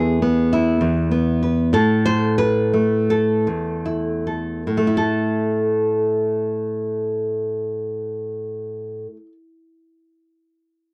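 A solo nylon-string guitar, fingerpicked with fresh strings and a deep classical tone, sits up front in this wistful, haunting folk excerpt, drifting in rubato 4/4 between 72 and 105 BPM as it slows over the opening 4.7 seconds, moving from E to A5 and spanning E2 to C5 in a dry, close 1970s-style studio sound with moderate booth ambience.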